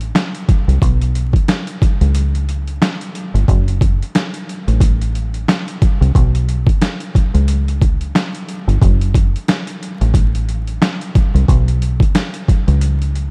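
A swung sixteenth-note groove at 90 BPM in 4/4 drives this gritty, moody boom-bap hip-hop cut, taken from a longer piece and running about 13.3 seconds. A sampler-style drum kit of kick, snare and hi-hat plays throughout, pitched down and compressed, with a thumpy kick, a medium-tuned snare, and overdrive plus vintage 12-bit grit that gives it a crunchy, lo-fi bite. Beneath it, a deep dub fingered electric bass holds the low end from F#1 to C#2, its tone dark and round, foam-muted for a soft, damped attack, and captured direct and amped. Both parts sit up front in the mix. Vinyl crackle and a light reverb frame the whole track with a dusty, worn patina.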